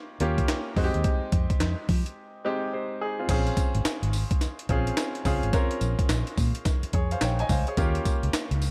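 A bouncy, punchy new jack swing groove at 107 BPM in 4/4 with swung 16ths, this R&B cut in Bb dorian opens on a clear, polished concert grand piano moving through Eb7 and Fm7 before a gritty, pitched-up breakbeat kit and a dark, round muted fingered electric bass join at 0.2 seconds. The compressed, overdriven drums sit up front with a thumpy kick, high-tuned snare, hi-hat, handclaps, tambourine and crash cymbal, all bathed in gated reverb, while the amped bass grounds the low end. After a break from 2.2 to 3.3 seconds, the harmony settles onto Bbm7 for a new section, with the present, short-sustained piano riding on top in a dry, close mix.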